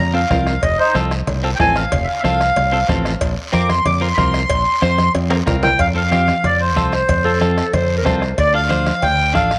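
Joyful and made for dancing, this short cut from a longer cumbia moves with a straight, steady four-beat pulse. A reedy, airy accordion with a slow beating shimmer leads up front, carrying a solo over a bright, direct fingered electric bass and a clean, compressed electric guitar picking its accompaniment. Most of the percussion sits close and dry: a raspy guiro, ringing medium-tuned congas struck with hard hands, and metal-shell timbales with cowbell, while a soft-beater bombo sits close but tucked into the background. A drum fill at 5.0 seconds leads into a new section at 5.8 seconds, and at 7.2 seconds a breathy clarinet adds a brief, jazz-style second line with vibrato, scooped notes and a smooth top. The whole mix sits in a moderate echo-chamber reverb that gives the dry percussion a studio glow.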